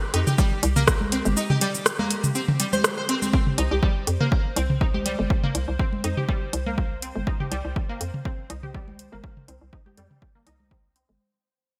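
Minimal techno at 122 BPM with a light swing, hypnotic and clinical, cut from a longer piece: a punchy, overdriven kick and analog drum machine hi-hat, rim click and shaker sit up front with electronic toms and congas, a hollow, bouncy FM bass and a squelchy, nasal blip pluck with chorus, 12-bit grit and delay pump against a soft, detuned gated texture in the background, opening on a C5 drop before a fade-out from 3.3 seconds as filter sweeps move across the bass and pluck, all in a bright 1980s-style digital mix with a lush hall reverb.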